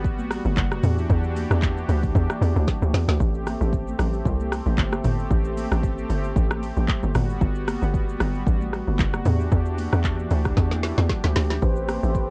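A swung 4/4 groove of punchy, up-front log drum bass and a gritty, sampled afro-pop drum kit with a deep kick, woody snare, metallic hats, handclaps, shaker, rim click and toms (with fills near 2.7 and 10.6 seconds) drives this soulful, deep amapiano fragment, as very quiet, thick-skinned congas sit softly beneath a smooth, detuned sawtooth pad shimmering with chorus and tremolo over jazzy ninth and seventh chords, until a lightly overdriven tonewheel organ with key click and slow rotary swirl stabs in at 11.6 seconds, all carrying a dry cassette-tape character.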